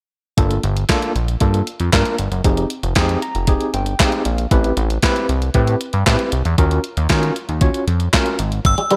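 Light digital ambience frames this late-night, funky slice of early-eighties boogie funk in straight 4/4, cut from a longer piece. A clean 12-bit drum machine sits up front, its thumpy kick, medium-tuned snare, hi-hat and handclaps carrying gated reverb and the air of a large room. Alongside it, a fat analog bass with a detuned sawtooth tone, fast attack and a moving notch filter sweep anchors the low end. An overdriven tine electric piano, barky and gritty through a combo amp with fast tremolo, supplies the accompaniment over Gm9, Fm9, Am9 and Ebm9 chords, and breaks into a fill at 3.0 seconds. In the final moments, a metallic FM bell rings out a single high note at 8.7 seconds, inharmonic and decaying under chorus and slapback echo. A slightly broken-up, twangy electric guitar adds a picked riff note with ensemble chorus at 8.8 seconds.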